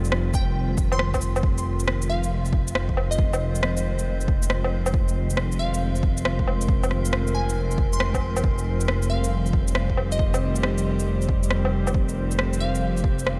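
Wistful and rainy, this future garage excerpt at 137 BPM in F minor swings its 16ths as a warbling, lo-fi tape-like pad with chorus, phaser and sidechain pumping holds chords over a deep, rumbling detuned saw bass, while overdriven electronic shaker, rim click and woodblock play alongside a punchy overdriven kick from 0.3 seconds, a crystalline wavetable pluck carries the melody through chorus and analog delay, and a calm texture of drifting glass harmonics slips into the background at 2.7 seconds, all in light digital ambience.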